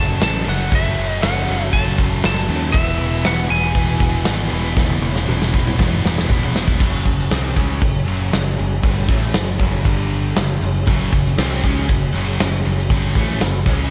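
A straight 4/4 hard rock groove at 118 BPM in F# minor drives this heavy excerpt, with a big, punchy acoustic drum kit up front and a growly, direct picked bass underpinning a wall of riffing guitars: a sludgy overdriven one, a scooped, high-gain part with slapback echo that drops out at 6.8 s and returns at 10.9 s, and a very quiet double-tracked high-gain layer. A dark, slightly broken-up lead guitar plays a compressed melody over the opening until 6.3 s, while a tonewheel organ sustains clear, lightly overdriven chords through a slow rotary speaker with chorus vibrato and key click in the background. A drum fill leads into the second section, where the chords move from F#m through a brief G5 and back, all set in a light small-room reverb.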